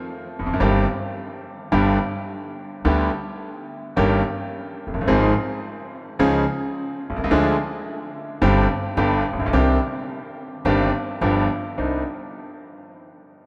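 A bright, brilliant concert grand piano sits up front with a deep bass register, carrying the accompaniment of this melancholic, tense tango from 0.4 to 12.0 seconds in a loose, rubato feel. Beneath it, a woody pizzicato upright bass with steel strings plays the low line over the same span. Both sit in a vast, echoing cathedral space whose long reverb lingers after they stop, as this fragment of a longer piece moves through dark harmonies such as Dbadd9 and Ddim before settling on Cmadd9.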